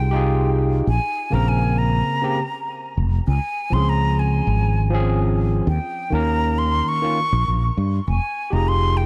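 A dark, warm production with light reverb and a small-room ambience frames this smooth sunset chillout passage, cut from a longer piece and set in a straight 4/4 feel. A hollow jazz flute carries the melody, airy and close-miked with a soft attack and vibrato, its line trailed by digital delay. Beneath it, an overdriven tine electric piano plays the accompaniment through a combo amp, bright and barky with a gritty edge and a tape echo. A mellow fretless electric bass sits loudest in the mix, round, punchy and direct. All three parts play together for the full 9.1 seconds over harmony that moves from Fm9 through Bbmadd9 and Dbmaj7 before returning to Fm9 at 8.1 seconds.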